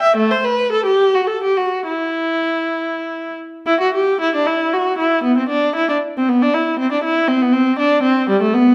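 A lone bowed viola opens this short fragment of a baroque-style suite movement, its warm, smooth tone shaded with vibrato and held close up front as it moves through a solemn, introspective line in triple time with a freely flexing rubato. The even phrasing turns to a new passage at 3.7 seconds, and the single player's sound rings into a wet recital hall reverb that gives each note a lingering halo.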